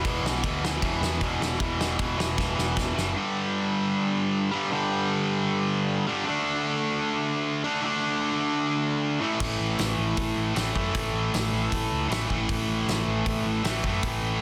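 A bright, up-front overdriven electric guitar, double-tracked and picked, drives this upbeat, energetic punk rock excerpt with a riff over E5, G5, D5 and A5 power chords, backed from the start by a growly picked bass and a loose, roomy indie drum kit with a fat snare and tight kick that both drop out after a drum fill at 2.4 seconds and return at 9.4 seconds, as the half-time section carries on in a dense, heavily limited mix with little reverb.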